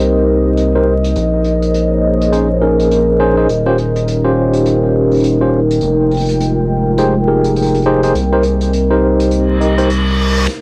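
Recorded at home onto cassette with vinyl crackle and a moderate booth ambience, this swaggering, gritty glitch hop cut from a longer piece has a worn, lo-fi haze. A gritty, aggressive synth bass sits up front, saturated with overdrive and blending square, sawtooth and sine tones with oscillator sync, a plucky filter and a moving notch. A bright, clean tine electric piano plays stabs that sound as if heard through built-in speakers, with tape echo and a filter sweep running across the whole passage. Underneath, a moody analog pad holds sustained chords in the background, colored by chorus and phaser, while a mellow ambient pad with detuned unison voices, a sub octave and a long release adds lush texture from above. A soft acoustic kit of hi-hat and medium-tuned snare played with bundle sticks enters at 0.6 seconds, muffled by low-pass filtering and swung on the sixteenths, as the chords move from Cm7 through Bbm11, Eb13 and Fm9 before returning to Cm7, and an electronic reverse cymbal rises in at 9.5 seconds.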